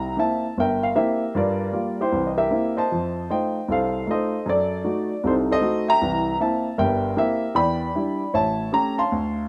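A dark, mellow baby grand piano sits up front in this relaxed, swinging solo jazz fragment, played at 155 BPM in 4/4 with a loose, rubato feel and a swung eighth-note lilt in C mixolydian, tuned to A4 = 438 Hz. The harmony moves from C7 through Gm7, F7 and an F#dim7 before settling back on C7 around 6.0 s and turning through Em7 to A7, the piano ranging from deep G1 up to C6. The natural piano tone is captured in a small room with the rough character of a home demo, and the 9.5-second passage is cut from a longer piece.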